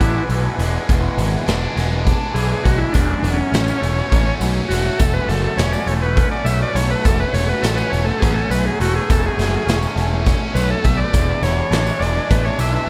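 Driving along in a straight 7/8 at 205 BPM, this trippy, kaleidoscopic psychedelic rock excerpt centers on a reedy, heavily vibrato-laden transistor combo organ soloing through analog delay. Beneath it, a fuzzed, up-front picked electric bass locks in with a gritty, saturated garage drum kit whose punchy kick pumps in a bright stone room, while a biting, double-tracked overdriven guitar riff runs through phaser and delay. Dark, woody bowed strings sit lush in the background, and a jingly tambourine enters at 2.9 s as the harmony moves from E7 to F#madd9/E and back to E7 at 11.1 s, all within an echo-heavy mix.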